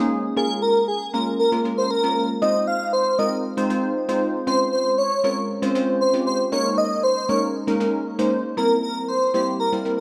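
Driving and bittersweet, this pop passage in F minor moves at 117 BPM in a straight 4/4, tuned slightly flat to A4 = 437 Hz, and is cut from a longer piece. A crystalline, detuned wavetable pluck with a noise layer, ring modulation, a filter sweep and chorus plays the accompaniment for the full 10 seconds. From 0.4 seconds an airy, dreamy unison lead with vibrato, chorus and delay sings the melody up front over Bbm7, Fm7, Dbmaj7 and Eb7sus4 before landing on C7, all in a light reverb.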